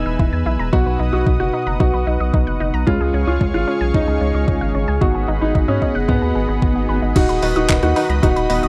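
A clear, worn concert grand piano with tape echo carries the bittersweet, melodramatic melody of this italo disco excerpt over a lush, detuned unison pad with sampler grit, glossy chorused polysynth stabs under a filter sweep, a round, deep analog bass up front, nasal analog pluck arpeggios in the background and a thumpy electronic kick, until a faint swell at 6.6 s leads into a clean 12-bit drum machine adding crash cymbal, handclaps and hi-hat from 7.2 s in a dry, close 1970s-style studio sound.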